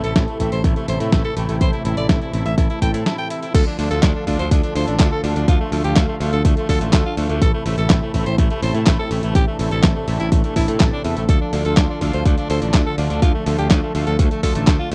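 A raspy, edgy alto saxophone carries the melody with vibrato and tape echo over a danceable, bittersweet italo disco groove, cut from a longer piece. A punchy electronic kick sits up front, layered with a gritty, overdriven sampler-style kit of snare, handclaps, hi-hat and crash, while a bright, growly picked electric bass drives underneath. Veiled, muted strings hold soft bowed chords and fat, detuned synth brass stabs with chorus sit in the background, all in a dry, close 1970s-style studio sound, with a brief break at 3.1 seconds.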